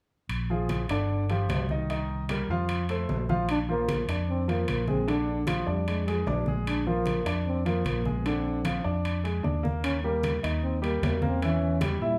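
Afro-Cuban jazz with a lively, sophisticated mood, this short section cut from a longer piece moves at a brisk, straight pulse with the band playing together in one room under a wet studio reverb. A growly, amped fingered electric bass sits up front alongside a clear concert grand piano whose accompaniment carries a deep, natural low end, the piano entering just after the bass at 0.5 seconds. Low-tuned congas with a thick skin and soft hands stay in the background, while metal-shelled timbales ring from a distance in the large room. At 3.5 seconds a breathy trombone takes the solo melody, its dark tone marked by vibrato, scooped notes, a soft attack and a smooth top in a jazz style. The harmony circles through dominant and minor seventh chords before turning to Eb and a diminished chord near the close.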